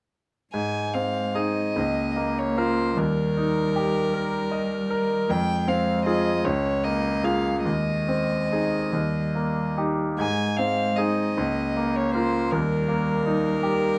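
Serene and lyrical, this slow romantic movement for piano trio unfolds in a rubato 6/8 at around 46-54 BPM in A-flat major, cut from a longer piece. All three instruments play together from 0.5 s to 14.0 s. The violin carries the melody, its tone warm and pure with a soft attack, played sul tasto so that its smooth upper line seems to float up front. Beneath it the cello sings a second line, dark and woody with vibrato, also bowed sul tasto and heard close. The grand piano supplies a bright, brilliant accompaniment with long sustain, reaching from deep bass up into the middle register, and it sits up front. A light reverb surrounds the trio, and the harmony moves gently through chords such as Bbm/Db, Eb and Fm before settling on Ab and leaning toward Eb once more.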